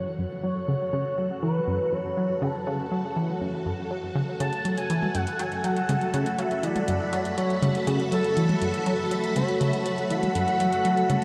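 A tight, driving sequenced synth riff pulses in straight 4/4 from the start, joined at 4.4 seconds by a booming analog drum machine with metallic hi-hats and toms, in this hypnotic, cosmic stretch of ambient space music cut from a longer piece. Above the riff, a smooth, expressive synth lead sings with vibrato through lush chorus, shimmer reverb and tape echo, while a vintage, full-bodied string machine ensemble holds sustained chords and fades in alongside an airy, breathy wind-like noise texture sitting in the background. The whole mix is dreamy and soaked in a huge ambient reverb, staying on a single minor chord throughout.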